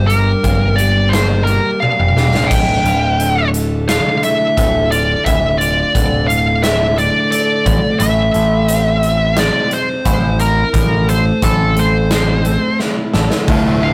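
Quiet-loud alternative rock with an angsty, dark mood, moving in a half-time feel as a distorted, high-gain lead guitar carries the melody over arpeggios from a clean, bright twelve-string electric guitar and a growling, overdriven picked bass pushed up front. A big-room acoustic drum kit with bright cymbals, a punchy kick and toms drives the chords from Gm through Dm to Am, marking the way with drum fills at 1.8 and 12.8 seconds. At 13.5 seconds a compressed fuzz guitar riff bursts in up front just as this rough, saturated rehearsal-room excerpt with light reverb cuts off.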